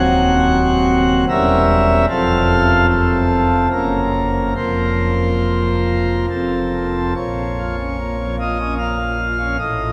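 A solo pipe organ opens on a full principal chorus, its romantic voicing placed up front and spanning from a deep Eb1 to Gb5 at the top. This is a solemn, grave chorale-style classical piece in Bb minor and 3/4, moving at a slow 68-77 BPM with a flexible, rubato feel. Diminished harmonies at the start lead toward F, pass through Gb and a suspended F before returning to F, building a sense of weighty expectation. At 7.2 seconds the music arrives on Bb minor and a new passage begins, carrying on until the fragment ends at 9.9 seconds. A long cathedral reverb with a six-second decay surrounds the organ, letting each chord hang in a vast, resonant space.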